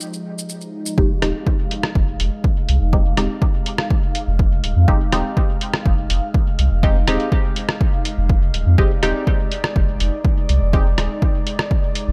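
The mix is close and fairly dry, with little reverb, though the drums carry a touch of studio ambience. This short cut from a longer dub techno piece has a nocturnal, hazy mood in straight 4/4, resting on a single Fm7 chord. A breathy, detuned pad with a noise layer and a moving notch sustains soft chords alongside a muted, sawtooth dub chord stab that plucks through a filter and decays into chorus, phaser and dub echo, both parts pumping against the sidechain. Grainy acoustic maracas sit close and up front over the pad and stab at the opening until 1.0 s, when a round, sine-like sub bass and a punchy, overdriven electronic kick arrive together. From 1.2 s a lo-fi sampler-style kit adds hi-hat and rim click, compressed, pitched down and muffled with a tape-warm character. The kick and the sampled kit stay up front, while the pad and stab hang back in a soft, mellow haze.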